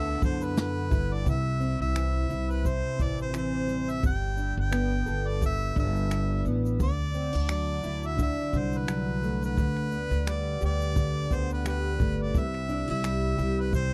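A clear harmonica carries the melody in this heartfelt, easy-going acoustic pop piece, its light vibrato trailing a touch of tape echo. Beneath it, a double-tracked, fingerpicked steel-string acoustic guitar with a full-bodied jumbo tone supplies the accompaniment, while a woody, thumpy pizzicato upright bass with gut strings sits up front. A jazz brush kit joins at 0.2 s with a boomy kick, a medium-tuned snare, shaker and finger snaps, giving the 4/4 groove a gentle sixteenth-note swing. A rich, very quiet bowed symphonic string section holds smooth sustained chords only until 1.2 s before dropping away. The dry, close sound recalls a 1970s studio, and the harmony moves from G6/D through C, Gadd9, Dadd9 and Gadd9/D before returning to C in this section cut from a longer piece.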